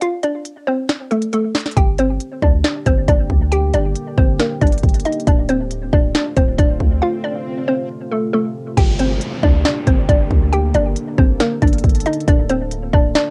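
Eerie and hard-hitting, this half-time trap fragment pairs a hollow, detuned square-wave pluck melody, treated with chorus and analog delay, with up-front electronic drums of hard-clipped kick, sharp snare and crisp hats carrying cassette-tape grit, while a boomy sine 808 bass arrives at 1.8 seconds, a dark, wave-folded ambient pad with ring modulation and a slow attack slips in at 2.4 seconds under chorus, reverb and tape coloring, and an electronic swell and downlifter mark the passage from 6.5 seconds.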